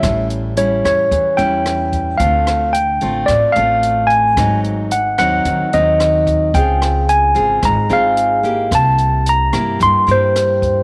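A straight 4/4 bossa nova pulse at 110 BPM is carried by a compact cocktail drum kit of hi-hat, rim click and punchy kick, set back in a tight, roomy booth. Beneath it, a pizzicato upright bass with gut strings gives a woody, thumpy low end, while a fingerpicked classical nylon-string guitar with fresh strings adds bright accompaniment. Up front, a clean tine electric piano heard through its built-in speakers carries the melody between C5 and C6. All four parts play throughout this 10.8-second fragment of a longer piece, moving through A7, Dm7, Ab7, Dbmaj7 and C7. A moderate plate reverb gives the recording a sunny, relaxed glow.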